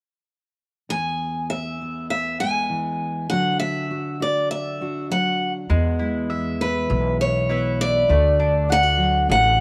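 Pastoral and warm, this steady 100 BPM folk passage in E major, cut from a longer piece, opens at 0.9 seconds with a boxy, up-front picked acoustic guitar carrying the melody over a full-bodied fingerpicked dreadnought accompaniment, where a touch of finger squeak can be heard, as the harmony moves between E and D. At 5.7 seconds a woody pizzicato upright bass arrives up front beside a mellow, round mandolin playing double-string arpeggios, filling out the texture through 9.6 seconds. Light reverb gives the ensemble a gentle sense of space.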